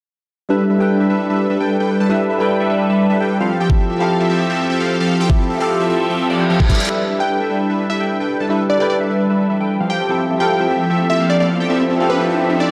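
A dark, warm production steeped in lush hall reverb frames this playful, bright half-time future bass excerpt. A fat, detuned sawtooth polysynth riff with chorus, phaser and a filter sweep sits up front over a bell-like tine electric piano treated with phaser, digital delay and sidechain pumping, while a knocking electronic kick pushes forward from 3.7 seconds and a reverse cymbal and riser creep in behind at 6.3 seconds. A short hi-hat drum fill opens a build-up where a boomy, barely audible 808-style bass enters at 6.9 seconds and a punchy, catchy unison lead with delay and sidechain pumping carries the melody over chords moving between G69 and Fmaj9.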